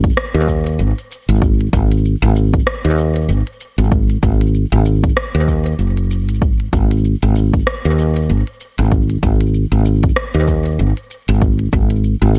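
A woody, growly fretless electric bass sits up front with a dark, round tone, moving between F#1 and D#2 across this mystical, earthy stretch of organic downtempo at 96 BPM in 4/4, with a gentle swing on the sixteenths. Beneath it, a deep, overdriven electronic kick drives the groove until 11.9 s, while an electronic kit of smooth hi-hats, rim clicks and shaker adds its own overdrive and tape echo. The mix is dry and echo-heavy, and the passage is cut from a longer piece.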